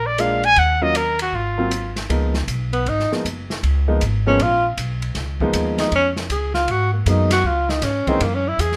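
Small-group swing-and-bop jazz at 157 BPM in Db mixolydian, this playful, warm fragment opens with a vibrato-laden trumpet stating the melody up front for its first 2.0 seconds over woody pizzicato upright bass, clear long-sustaining grand piano accompaniment and a dark small-room drum kit with boomy kick and dark cymbals, before a breathy tenor saxophone with scooped notes enters at 2.7 seconds for a solo, all set in light reverb.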